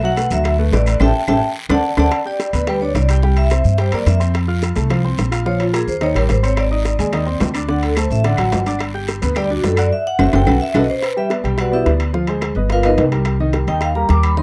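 A brisk, straight 4/4 pulse at 215 BPM drives this sophisticated, danceable Afro-Cuban jazz excerpt in G major, cut from a longer piece. The upright bass sits up front with a thumpy, woody pizzicato tone on steel strings, while tight, high-tuned bongos played with soft hands stay in the background. Ringing metal-shell timbales with a vintage, band-limited character join in, a raspy guiro scrapes close and dry, and very quiet claves in a small room weave in and out. A clear, present grand piano supplies the accompaniment, and the band hits accents at about 1.0 and 9.9 seconds, with drum fills at about 1.4 and 9.9 seconds. From 2.1 seconds a vibraphone with medium hard mallets takes a metallic, ringing solo with fast motor vibrato over rich, shifting harmony that runs through chords like Bb5, Eb6, F#dim and G7alt. The sound is a dry, close 1970s-style studio recording with little reverb.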